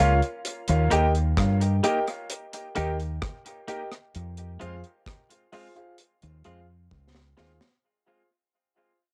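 Dub reggae in a hypnotic, meditative mood, cut from a longer piece and fading out throughout, where a dark, round fingered electric bass sits up front beneath warm grand piano stabs soaked in dub echo and plate reverb, a bright, clean, compressed electric guitar with cassette tape grit and echo, and a dry acoustic drum kit with a high-tuned snare, tight kick, rim click and hi-hat that plays a fill from 6.9 seconds, all captured as a home cassette recording moving from Eb to Fm.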